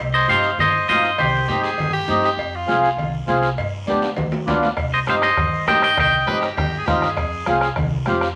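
Driving and danceable, this cumbia excerpt rides on a woody, thumpy upright bass, ringing high-tuned congas, a background cowbell and timbales and a raspy guiro, while a reedy, up-front mellow accordion carries the chords and a bright twangy electric guitar with spring reverb plays the melody in short phrases, joined by a gritty raspy tenor saxophone line from 1.5 seconds; a drum fill at 4.0 seconds brings in a close, dry bombo, all under a vinyl crackle.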